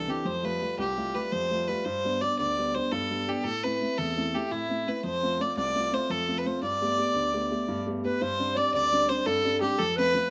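A rich, nasal fiddle carries the melody from the start of this rollicking, bright Celtic slip jig in 9/8 at 113 BPM, set in G mixolydian over an intimate upright piano whose woody, boxy tone, long sustain and audible action noise sit up front beside it. Chords move through Fadd9, G, Am, F and Gadd9 before the opening phrase repeats, and at 8.0 seconds a dark, soft-attacked clarinet slips in behind them with a classical-style second line. Moderate studio reverb gives the room some air, and this short cut from a longer piece ends at 10.3 seconds.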